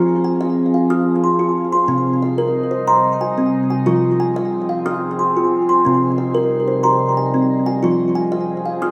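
This meditative world excerpt opens with a kalimba and an evolving wavetable pad sounding together from the start, both up front in a wet echo-chamber reverb with a 1.8-second decay. The kalimba plays ringing arpeggios with a woody, hollow-box tone and a soft fingertip pluck, its notes carried by delay and a shimmer reverb that leave them airy. Beneath it, the pad holds sustained chords with a slow attack and long release, its detuned, warbling sine tone dark and vintage, morphing through a phaser and its own reverb. The music moves at 91 BPM in a straight 3/4 in F minor, swaying between Fm and Cm, with a return to Fm at 7.8 seconds. The gentle mood holds steady for the full 8.9 seconds, as both parts play throughout this single section cut from a longer piece.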